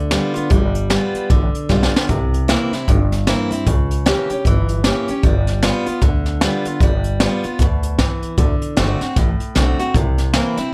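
Rockabilly with a rowdy, upbeat mood, this short excerpt cut from a longer piece runs at 153 BPM in 4/4 with a swung eighth-note feel, sitting in G mixolydian. A picked steel-string acoustic guitar carries the accompaniment up front, its bright tone marked by audible finger squeak and an auditorium-like body. Underneath, a pizzicato upright bass with gut strings gives a woody, dark, thumpy low end. A jazz kit played with brushes, up front in an airy studio room, pairs a high-tuned snare with a boomy kick and hi-hat, and drops in a quick fill between 1.7 and 2.1 seconds. The changes move from G7 to C7, pass through C#dim7, return to G7, then go to D7 before settling on C7 near the end, all in a dry, polished sound with little reverb.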